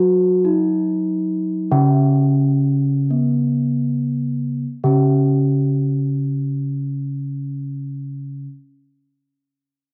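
A home cassette recording with a moderate spring reverb and the ambience of a small room carries this serene, shimmering gamelan fragment, cut from a longer piece and slowing down over its first 4.6 seconds. Two bronze metallophones sit up front and sound from the start until 8.5 seconds: the higher one carries the melody in a mellow, soft ringing tone struck with padded disc mallets, while the lower one plays the accompaniment with a wooden mallet, close-miked, dry and full.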